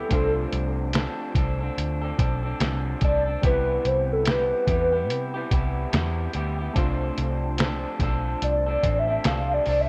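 The recording sounds dry, a short slice of laid-back, hazy bedroom pop with a gentle swing on the sixteenths. A soft, hollow synth lead with a woody, clarinet-like tone carries the melody as a solo throughout, its sustained notes colored by ensemble chorus, vibrato and tape echo. Beneath it, an electric guitar through a small old amp plays fingered accompaniment with a slightly broken-up, compressed lo-fi grit, shimmering with subtle chorus and a vibrato effect. Warbling, nostalgic synth keys sit in the background, airy and detuned, with a filter sweep and decaying notes. A dark, round, foam-muted picked bass and a muffled, pitched-down sampler-style drum kit sit up front, the kit entering at 0.1 s with a thumpy kick, fat snare and hi-hat. The harmony drifts from Dm7/C to Cmaj7 at 3.4 s and on to Dm7, giving the fragment a dreamy, unresolved feel.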